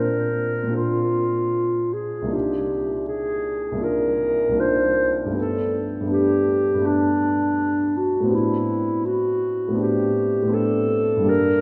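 Unhurried and rubato over a 4/4 metre, this short classical excerpt lets the pulse breathe freely, in a pastoral, luminous mood with an impressionist flavour. A dark-toned clarinet carries the melody from 0.0 to 11.6 seconds, its soft attack and roomy character giving the line a gentle, classical-style solo voice. Beneath it, a concert grand piano supplies warm accompaniment throughout, with deep bass anchoring the harmony. The chords drift through Bbadd9, Cm11, Gadd9 and Am11, their added tones lending a hazy, glowing colour. A lush church reverb with a long 3.2-second tail surrounds the duo, evoking a church or concert hall and leaving the passage feeling suspended, as befits an excerpt cut from a longer piece.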